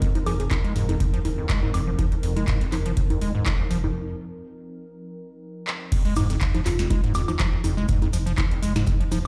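Played through a big sound system in a bare stone room with light reverb, this trippy, hypnotic acid house excerpt moves at 122 BPM in F minor with a gentle 16th-note swing, built on an up-front deep electronic kick, a booming analog drum machine with a crisp snare, metallic hi-hats, handclaps, congas, woodblock and crash, and a round, dark analog bass pumping under the groove. A squelchy, resonant square-wave acid bass riff with digital delay sweeps through its filter over a warbling, nostalgic lo-fi pad of sustained chords, while a bell-like FM electric piano sparkles faintly in the background. After a break and a drum fill, the pad falls away at 5.9 seconds as the drop arrives and grainy maracas join the mix.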